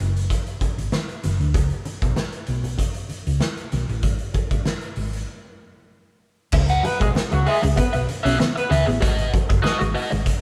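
A straight 4/4 funk groove at 96 BPM in C# minor sets a cool, funky mood in this short cut from a longer piece, with the band playing live in one stone room with moderate reverb. A raw garage drum kit drives it from 0.2 seconds, gritty and saturated with a punchy kick, a medium-tuned snare, hi-hat and crash, sitting up front with a pumping room sound and a rolled-off top. Underneath, a dark, round hollow-body short-scale bass, fingered and amped, moves over F#sus2 and a rootless Aadd9, while low-tuned, damped congas with soft hands tap in the background. After a break from 5.3 to 6.5 seconds, the harmony shifts to C#m7 and later G#m7, and a crunchy overdriven guitar enters up front, picked, with wah and spring reverb. A clean, fingered electric guitar adds a dark riff in the background, and a mellow, distant horn section plays a tight second line from 6.8 to 8.8 seconds.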